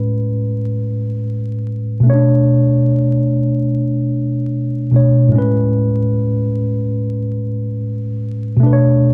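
A barky, slightly out-of-tune tine electric piano plays alone up front in this melancholic, hazy hip hop excerpt, its worn, clean tone sounding through built-in speakers with a cassette tape effect, a low-pass filter and a filter sweep across the first 8.6 seconds, drifting between Amaj9 and Bm9 in a swung feel inside a wet small room, all set in a dark production dusted with vinyl crackle.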